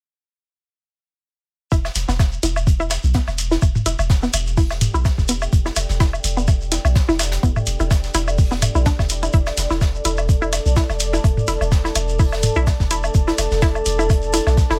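At 1.7 s this cool, clinical minimal techno cut in E minor locks onto a single Em chord at 126 BPM with a light 16th-note swing. An up-front soft kick, a punchy sine sub bass with a pitch-drop attack, and a hollow, bouncy square-wave pluck riff carrying chorus, phaser, delay and sidechain pumping all enter there, alongside an airy jazz brush kit with a high-tuned snare and a grainy acoustic shekere. Layered electronic woodblock and toms with dub echo follow at 1.8 s, and a tape-warm analog hi-hat set back in a large room arrives at 2.0 s. From 4.0 s a deep, moody detuned sawtooth pad with a sub octave, slow attack, chorus and sidechain pumping fills in a dark sustained haze, all under light reverb.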